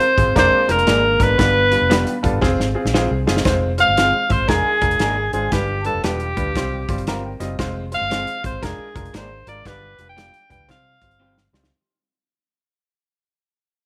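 A swung 4/4 groove at 116 BPM drives this urgent, passionate slice of uptempo 1960s-style soul in F minor, cut from a longer piece and fading out from 3.5 seconds onward over a cycle of Bb7/F, G7, Csus4 and Fm. Up front, a clear alto saxophone carries the melody with light vibrato, subtone and scooped notes. Beneath it sit a woody, slightly detuned upright piano, a round, foam-muted electric bass, an airy drum kit with a punchy kick and drum fills, and slightly broken-up guitar stabs in the background. A very quiet vibraphone with slow motor vibrato rings until 7.3 seconds, and a mellow horn section touches in briefly near the start and again around a band accent at 9.7 seconds, all in a small room.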